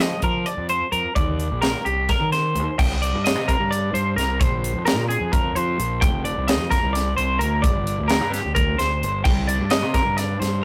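Math rock and midwest emo in a straight 7/8 at 260 BPM, this intricate, wistful excerpt pairs bright, twangy twelve-string electric guitar arpeggios with a fuzzy, overdriven fingered bass and a crisp, airy fusion kit with a high-tuned snare, punchy kick, hi-hat and crash, all up front in a rough rehearsal-room sound with light reverb and tube saturation, moving through chords from F7sus4 and Eb6 into a new section at 2.8 seconds that steps through Cm7, Bb5, Fsus2 and Gm before returning to Cm7.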